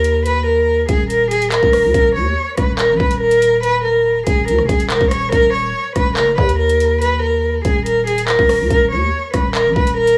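A rich, bowed cello sits up front, a single expressive player using vibrato and portamento between Ab4 and Db5, its soft-attacked tone coloured by cassette tape. Beneath it, a growling, buzzy 808-style bass with a fast attack and decaying tail holds the low end from Eb1 to Eb2. An electronic drill kit of knocking kick, metallic hi-hats, handclaps and rim clicks, also tape-warm, drives a half-time feel at 142 BPM. This ominous, menacing drill cut, lifted from a longer piece, carries light reverb and the small-room ambience of a home cassette recording across its 10.2 seconds.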